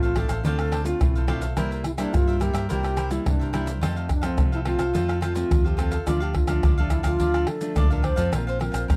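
Lively and sunny, this short excerpt cut from a longer samba and choro piece moves at 107 BPM in a straight 4/4 feel in F major. A mellow, airy alto flute carries the melody with a straight, tongued tone that sits distant and slightly unsteady, trailed by tape echo, and it drops out at 8.8 seconds just before the close. Beneath it, a crisp, picked cavaquinho and a fingerpicked classical nylon-string guitar with fresh strings and audible finger squeak supply bright acoustic accompaniment throughout. A dark, round, punchy hollow-body electric bass, played with the fingers through an amp, anchors the low end, while maracas, pandeiro, tamborim and a deep surdo sit up front, struck with hard hands. The harmony moves through Dm7, C7 and F before a new section at 6.1 seconds turns to Dm and then Bbsus2, all captured with close, detailed microphones and little reverb.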